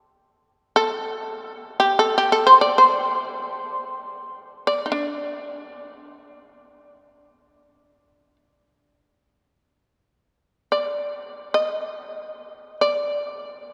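This excerpt unfolds in free time, a calm and austere piece of Japanese traditional chamber music centered on D in the sen mode. A solo shamisen enters at 0.8 seconds and carries the music alone until it ends at 13.7 seconds, ranging from D4 up to Eb5. Its plectrum-plucked, fretless voice is percussive and buzzing, powerful and placed up front. A very wet cathedral reverb surrounds the instrument, letting each struck note hang in the space of a church or concert hall. The short passage, cut from a longer piece, restates its opening idea at 9.5 seconds.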